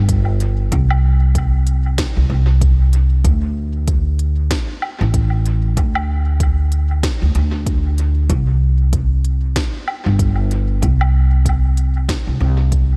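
A swung sixteenth-note groove in 4/4 drives this spacious, hazy ambient dub, cut from a longer piece. A plucked, steel-strung upright bass with tube saturation sits up front, under a deep, tape-warm electronic kick and a quieter electronic kit whose woody snare, crisp hi-hats and woodblock trail off in dub echo, both drum parts re-recorded in a large room. All three parts play throughout before a fade-out from 11.7 to 13.0 seconds.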